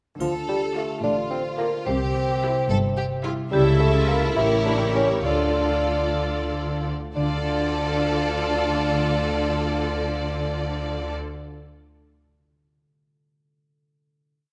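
A playful, whimsical cinematic film cue in 6/8, with a magical, quirky mood. A warm bassoon with light vibrato and a soft attack carries the classical-style melody, while a percussive marimba sits in the background doubling the tune at the octave. Around them, pizzicato violins and clear violas pluck chords in the rhythm of the tune from a distance and also hold sustained chords. A lush violin section adds a focused counter-melody, and a concert harp rings out fingerpicked broken chords behind the ensemble. Cellos play a smooth pizzicato and sustained bass with passing notes, doubled by the double basses, while a very quiet triangle adds a few strokes only at the opening, up to 1.3 s. The music slows from 2.7 s and comes to rest on a final chord at 7.2 s, all set in a moderate scoring-stage reverb.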